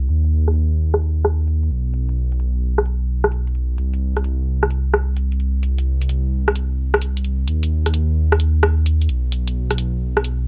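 A skippy, swung two-step rhythm drives this soulful UK garage fragment, cut from a longer piece, as an up-front electronic drum kit of muffled hi-hats and rim clicks, tape-softened and filter-swept throughout, rides over a deep, detuned saw bass that rumbles and beats with tube saturation, in a dry, homemade cassette recording.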